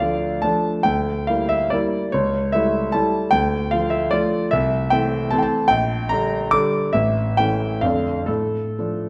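Dotted rhythms drive this capricious, nostalgic romantic classical dance in 3/4 and D minor, a short excerpt where a solo concert grand piano, up front with a deep bass and natural tone, moves with rubato between 112 and 159 BPM through moody harmonies that come to rest on D minor by 8.3 seconds, all set in a moderate recital hall reverb.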